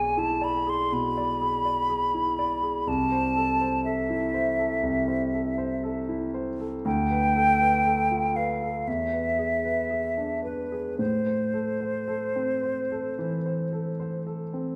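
Elegiac and solemn, this fragment of a romantic classical duo moves with a rubato sway as an airy, hollow concert flute with vibrato and a crisp attack sings the close-miked melody, while an intimate grand piano with deep bass, a smooth vintage tone and audible action noise accompanies it up front, both set in a reverberant recital hall, the flute ending at 14.2 seconds and the piano closing at 14.8.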